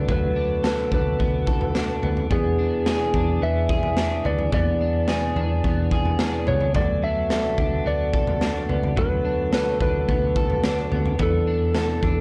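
Dreamy and blissful, this dream pop excerpt in D lydian moves at a straight 108 BPM in 4/4, with a slightly broken-up electric slide guitar carrying the melody through analog delay over a mellow, lightly overdriven tonewheel organ turning on a slow rotary speaker, chorused and delayed arpeggios from an electric guitar at the edge of break-up, a dark, foam-muted fingered bass with tube saturation, and a gritty, punchy garage drum kit of kick, snare and toms sitting up front in a pumping small room from 0.1 seconds, all under light reverb as the chords drift from D6 to E7 and close on E7sus4.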